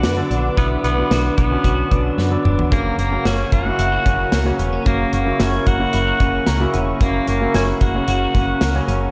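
A raspy, gritty tenor saxophone with delay carries the melody from the first moment in this nostalgic yet urgent 1980s-style pop excerpt, over a clear concert grand piano, a punchy, round FM bass and a big rock drum kit with a punchy kick. A mellow, detuned analog pad with chorus and a bright, twangy twelve-string electric guitar riff, treated with ensemble chorus and delay, sit in the background as the harmony moves from Bm to F#. A drum fill arrives at 2.2 seconds and a grand piano fill at 6.2 seconds, all within a dreamy mix soaked in plate reverb.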